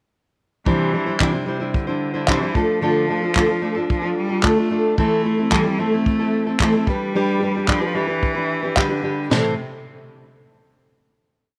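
A fingerpicked steel-string acoustic guitar, a compact cocktail drum kit and a bowed cello all enter together at 0.7 seconds in this tender, wistful acoustic pop piece in A minor, moving at 111 BPM in a straight 4/4. The dreadnought guitar sits up front with fresh strings and open chord shapes, mixing fingerpicking with sixteenth-note strumming across a verse that moves through Cadd9, Dm, Am/E and G. The drums are dry and punchy, with a stomp-and-clap feel built from kick, a high-tuned snare, toms, handclaps and a dark crash cymbal. Alongside them, a single cellist plays a rich, focused second line with vibrato and a smooth top, placing answering phrases in the melody's rests. Light reverb and a small-room ambience frame the intimate sound, and the piece settles on a final A minor chord at 9.3 seconds as the parts finish just after.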